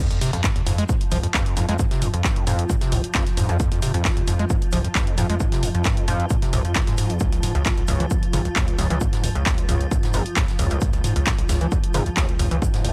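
The recording sounds dry, a short cut from a longer piece of driving, hypnotic peak-time techno in a straight four. An up-front electronic kick, heavy and tape-warm with a small-room character, anchors the groove alongside a techno kit of handclaps, toms and warm hi-hats that pump against the sidechain. A very quiet acoustic brush kit adds a medium-tuned snare, hi-hat and shaker underneath. A gritty, saturated synth bass, resonant and wave-folded with a fast plucked attack, sits at the front, while a squelchy square-wave acid riff with filter sweeps and tape echo churns further back. Above them, a swarming, detuned drone with a moving notch and granular texture breathes through its own reverb, as the harmony shifts from F minor to D-flat minor at 7.2 seconds before a brief electronic noise sweep arrives at 12.7 seconds.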